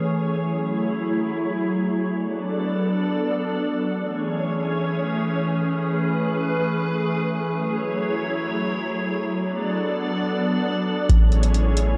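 Atmospheric cloud-rap in A major and free time, this blissful, dreamy cut from a longer piece floats on a glassy FM pad with ensemble chorus, built-in reverb, sidechain pumping and cassette tape, sustaining chords from F#m9 through Bm7 to Amaj7 before a deep, clean 808-style bass and a booming, overdriven analog drum machine with metallic hats arrive at 11.1 seconds, all wrapped in the light reverb of a home cassette recording.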